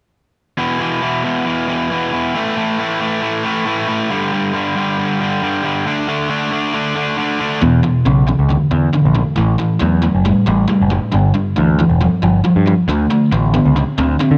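A straight 4/4 rock pulse drives along at 137 BPM in E dorian, giving this short cut from a longer piece a driving, brooding mood. A crunchy overdriven guitar opens alone at 0.6 seconds, playing a bright, picked riff up front with a touch of spring reverb as the power chords move through E5, A5, G5 and D5. At 7.6 seconds the band fills out: a cranked stack guitar joins with a second overdriven riff set further back in the mix, while a growling picked electric bass enters up front, its warm, amped tone pushed into overdrive. The same chord cycle repeats under this heavier lineup until the cut ends at 14.4 seconds. Light reverb and a digital ambience frame the sound.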